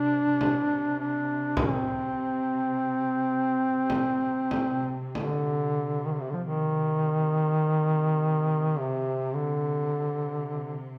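Freely paced in a rubato 4/4 around 46-54 BPM, this mournful, solemn Caucasian folk lament in C minor, cut from a longer piece, sets a mellow, smooth-topped duduk with vibrato up front on the melody over a rich, evenly bowed chamber cello section holding a low C drone, while a deep, distant frame drum played with hard hands sounds from 0.4 to 5.5 seconds, all within the moderate reverb of a recital hall.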